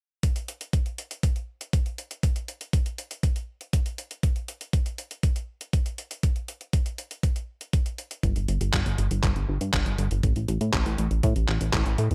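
An up-front, thumpy overdriven kick drives this playful, sunny italo disco fragment at 120 BPM in a straight 4/4, alongside a detuned 8-bit drum machine whose handclaps and hi-hat carry gated reverb and a gritty small-room edge, until a glossy, chorused retro synth bass with a plucky, ring-modulated pulse-and-sawtooth tone enters at 8.2 seconds, all in a dry mix.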